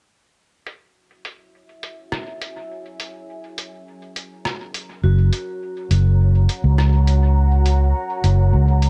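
Ambient dub at 103 BPM in F# mixolydian, hazy and spacious, with a muffled, pitched-down sampler-style drum kit of hi-hat and rim click entering at 0.7 seconds, its low-pass-filtered hats and snare trailing dub echo and studio reverb. A deep, moody pad of detuned sawtooth and sine layers fades in to hold sustained chords over an F#7 from 1.7 seconds, softened by chorus and its own reverb. At 5.0 seconds a round, amped fingered electric bass arrives up front while a bright, metallic vibraphone played with hard mallets rings out arpeggios in the background through analog delay, in an echo-heavy mix cut from a longer piece.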